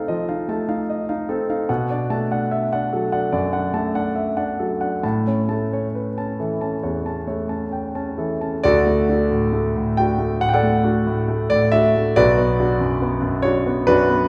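A polished concert grand piano, up front and rich in deep bass with short sustain, carries this lyrical, passionate romantic character piece for solo piano, heard in an excerpt cut from a longer work. The music moves in 4/4 at 65-76 BPM with a flexible rubato feel in D major, tuned to A4 = 439 Hz, and spans B1 to A5 as the harmony passes from F7/C through Bm7 and A. A new section begins at 8.6 s on D before turning to Bm at 12.2 s, all set within a wet recital hall reverb of a church or concert hall.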